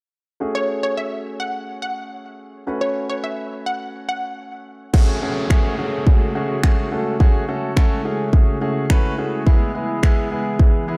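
A clear, intimate concert grand piano opens this driving, bittersweet dance-pop excerpt in F# minor at 106 BPM, pumping against the beat as a detuned sawtooth unison pluck carries a short melody with dub echo, before a punchy electronic kit of kick, finger snaps and crash cymbal enters at 4.9 s alongside a background downlifter, and a glassy, ethereal FM pad with chorus and slow attack fills out the dark production from 5.4 s as the harmony moves from F#madd9 to E at 9.5 s.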